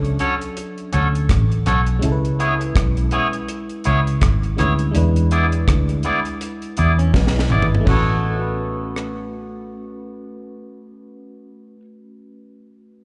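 A round, foam-muted fingered electric bass sits up front in this smooth, romantic lovers rock reggae excerpt, punchy and amped beneath a swung sixteenth-note feel. The deep reggae drum kit is dry and tight, with a high-tuned snare, rim clicks, toms, hi-hat, crash and dark cymbals, and it stops at 9.2 seconds after a fill that begins at 7.1 seconds. A twangy, scooped electric guitar plays bright, clean stabs treated with harmonic tremolo and slapback echo. A glassy FM electric piano with a bell-like attack carries the mellow accompaniment through chorus and tape echo. For a brief moment around 7.0 seconds, a slightly broken-up guitar through a small old amp adds compressed, picked arpeggios in the background. The harmony moves from Dmaj7 to C#m7 and settles on A69, and the music is heard as a live gig through a venue's PA with club reverb and a dulled top end.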